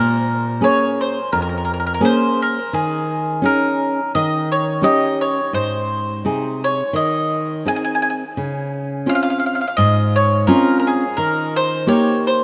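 Italian folk with a lively, romantic air at 86 BPM, lightly swung in 4/4, this short cut from a longer piece sets a bright, picked bowl-back mandolin melody with double strings up front over fingerpicked classical nylon-string guitar accompaniment that sounds full-bodied, moving from Ab major into Db major at 8.4 s, all bathed in a wet plate reverb within a rough home demo mix.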